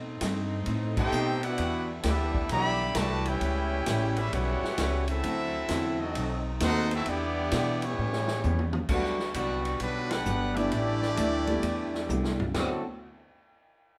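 A brassy, joyful big band swing cut from a longer piece at 131 BPM, where a clear, up-front trumpet section carries the melody from 1.0 seconds over a bright trombone second line, a woody, growly pizzicato upright bass, a clean hollow-body electric guitar, a roomy drum kit with dark cymbals and a punchy kick, and a very quiet saxophone section holding vibrato chords until 8.9 seconds, when a baby grand piano joins in the background as the tune settles into D mixolydian, with band accents, drum fills and moderate studio reverb.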